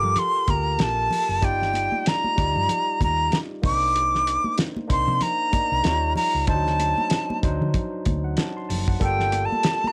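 A breathy, reedy jazz flute carries the melody up front with vibrato and a soft attack, its tone colored by cassette tape, over a barky tine electric piano heard through a combo amp in this bittersweet, silky excerpt of lush 1970s-style soul in G minor at 95 BPM, swung on the sixteenths. A dark, round hollow-body electric bass plays from the start until it drops out at 9.5 seconds, and a cloth-damped, thuddy drum kit with a fat snare, tight kick and rolled-off top enters at 0.2 seconds, while soft-handed, high-tuned congas sit in the background. The harmony moves from Gm9 through Ebmaj9/G, Cm9, Eb9 and D7b9 back to Gm9, all in a light reverb with the intimate feel of a home cassette recording.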